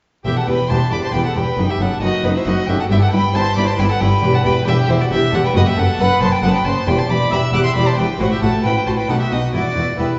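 Heard from further back in a reverberant recital hall through vinyl crackle and a muffled top end, this driving, stormy fragment of a baroque-style concerto movement in triple time sets a rich-toned solo violin against two gut-strung, period-style violin sections carrying the melody and a second line, a dark, distant viola section, a nasal cello section and a reedy double bass section on the bass, and a brilliant, dry harpsichord tucked into the background.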